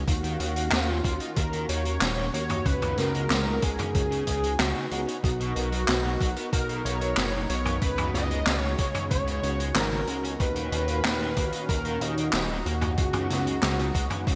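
A detuned sawtooth pad with a slow attack and a glossy, pulse-width-modulated synth bass open this nocturnal, cinematic synthwave excerpt at 93 BPM, both pumping under sidechain as the harmony moves through Ebm7, Db7sus4 and Bmaj7. From 0.1 s a thick, bold unison lead with vibrato carries the melody through lush chorus and delay, while an overdriven, picked electric guitar riff sits in the background with the same chorus and delay. A thumpy, tape-warm electronic kick drives alongside a gritty, up-front garage kit of handclaps, hi-hat, toms and a high-tuned snare in gated reverb, all set in a moderate hall within a bright 1980s-style digital production.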